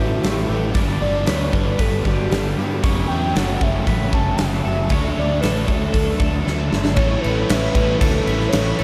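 A velvety sawtooth synth lead with vibrato sings a hazy, dreamy melody in A mixolydian over a twangy clean guitar's chorus-drenched arpeggios, three overdriven guitars grinding out biting, crunchy and bright double-tracked riffs in the background, and a fuzz-soaked fingered bass, with a huge arena drum kit of punchy kick and bright cymbals joining up front at 0.2 s and firing a fill at 6.5 s, as this 116 BPM shoegaze and dream pop passage cut from a longer piece moves through A7, G, F#m7 and Dmaj7 in a mix drenched in an 8.3-second reverb.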